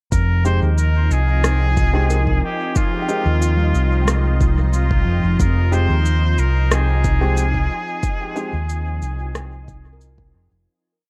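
A dark, warm ambient dub piece in F minor at 91 BPM, where a round, punchy fingered electric bass sits up front under a soft, deep electronic kick and a sparse, echoing cabasa and rim click, while a distant, nasal trumpet with straight mute sings a motif-based solo through dub echo over an airy, breathy pad's slowly shifting chords, woody upright piano stabs, mellow handpan loops drifting against each other from 2.1 seconds, and a bubbling, resonant filter texture holding a high note, all settling into a meditative, spacious groove that fades out from 7.2 seconds.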